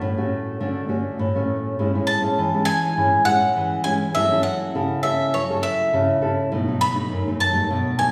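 A straight 4/4 samba pulse at 101 BPM drives this lively, festive excerpt in A major, cut from a longer piece. A bowl-back mandolin carries the melody, its bright, picked double strings sitting up front in a range from C#5 to B5. Beneath it, a nylon-string guitar supplies thumb-plucked classical accompaniment with the warm ring of fresh strings, spanning F#2 to A4 and also placed close to the listener. Both instruments play together from 0.0 through 8.1 seconds, moving from a short opening passage into a new section at 1.8 seconds as the harmony travels from Dmaj7 to Amaj7, then F#m7, and finally B7. A wet recital hall reverb surrounds the pair, giving the sound the spacious air of a church or concert hall.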